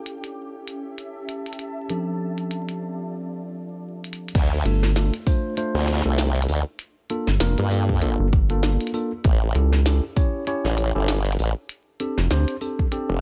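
A wobbling, formant-filtered bass with tube saturation and chorus drives this gritty, swaggering glitch hop excerpt in D minor at 98 BPM, surging up front at the drop at 4.3 seconds alongside a punchy layered kick, with a rubbery, hollow square-wave bass joining shortly after. From the start and throughout, a mellow tine electric piano plays clean stabs with sidechain pumping and digital delay over a glitchy kit of tiny snare, clicky hats and crash. Meanwhile, an ethereal, detuned pad with ensemble chorus and reverb drifts through the opening until 3.1 seconds, leading into a short break and drum fill. The dry mix carries a coat of vinyl crackle as the chords cycle through A7, F6, Dm and Gm7 with a 16th-note swing.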